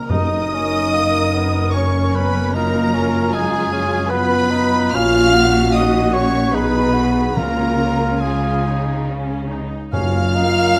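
This tender, slow romantic movement for symphony orchestra, cut from a longer piece, opens at once on a clear, focused violin section singing the melody high above a dark French horn section holding sustained chords, while timpani with medium mallets and calf heads sound in the background. Beneath the tune, a mellow oboe, a very quiet flute group with a pure tone and crisp attack, and a second, richer violin section set back in the mix share a second line. From 0.1 s the lower voices join: a smooth, lush viola section and a solo bassoon fill in the accompaniment, while cellos with expressive portamento and focused double basses carry the bass. Moving at 67-77 BPM in 3/4 with a rubato feel in F# major, the harmony travels from F# through C#7/F#, F#/A# and G#m/B to C# before settling back on F#, and the timpani return at 7.4 s. Vibrato colours the bowed strings, and a moderate scoring stage reverb lends the orchestra a gentle bloom.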